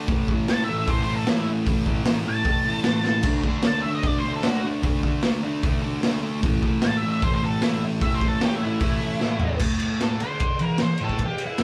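A straight, driving four-four beat pounds from a raw garage drum kit, its punchy kick, medium-tuned snare and dark cymbals sounding saturated and gritty in a small, pumping room, with fills at 3.1 and 9.2 seconds. A thick, double-tracked fuzz guitar sits up front churning out the riff, while a dark octave-fuzz lead guitar carries the melody above it and breaks into a solo at 9.6 seconds. It is a rowdy, swaggering slice of garage rock cut from a longer piece, played live together in one room with light reverb and some lossy compression artefacts.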